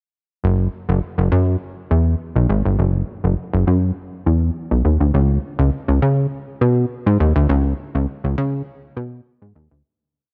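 A home cassette recording with light reverb and a touch of tape character carries this short, late-night funk piece at 102 BPM in a straight 4/4. A plucky analog synth bass plays alone from 0.4 to 9.8 seconds, up front and punchy, its sawtooth and pulse tones shaped by a fast-attack, decaying filter pluck into a fat, syncopated boogie line with chromatic approach notes, ranging from F#1 to C#3. The whole piece is a slick breakdown that begins fading out at 7.5 seconds.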